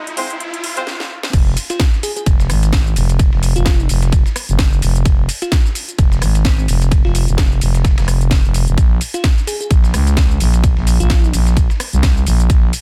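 Swaggering and bouncy, this bass house cut at 129 BPM in F phrygian opens with an electronic riser, a brief tight horn stab with octave doubling and tape echo, and a drum fill from the house kit's cracking snare and metallic hats before the drop lands at 1.3 seconds. From there a punchy, up-front electronic kick and a growling, overdriven FM bass with sidechain pumping drive the groove, joined at 1.7 seconds by a sparkling, warbling bell-like FM electric piano drenched in chorus and tape echo. A gritty, filtered sampler-style kit with hi-hat, ride and snare sits in the background, and the Fm harmony gives way to a chordless stretch at 8.8 seconds in a dense, heavily limited modern mix.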